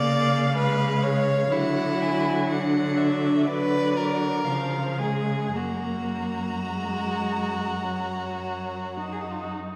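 A string quartet begins together in a serene, lyrical slow romantic movement, cut from a longer piece and shaped with a flexible rubato feel. A distant first violin carries the melody with a rich, vibrato tone while a clear second violin, placed up front, plays a second line; the viola adds soft-attacked, expressive accompaniment with portamento, and a close, focused cello anchors the bass. The violins stop at 9.5 seconds, leaving viola and cello to sound until 9.8 seconds in a wet concert hall reverb heard from further back in the room.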